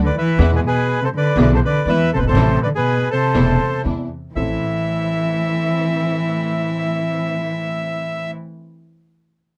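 Melancholic and dramatic, this rubato tango in A harmonic minor at 121 BPM sets a reedy, up-front bandoneon melody over a dark, bowed cello second line with vibrato, a clear but worn concert grand piano accompaniment with deep bass and short sustain, and lush string-section stabs in the background, while a woody, thumpy pizzicato upright bass on gut strings anchors the low end until 4.6 seconds, all captured in a dry, close 1970s-style studio sound.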